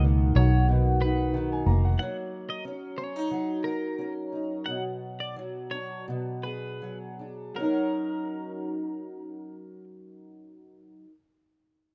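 This carefree, heartfelt acoustic pop fragment opens with a double-tracked, fingerpicked archtop guitar up front, its finger squeaks audible, alongside a round, dark, foam-muted electric bass, a woody upright piano in the background and bright, twangy arpeggios from a clean, compressed twelve-string electric guitar. The bass drops out at 2.0 seconds with the piano following shortly after, as the pace slows until 7.6 seconds over gently swung sixteenths and chords moving from Bmaj7 through F#6 and Bm6. The twelve-string stops at 9.8 seconds, leaving the archtop in a rough home demo mix with small room reverb.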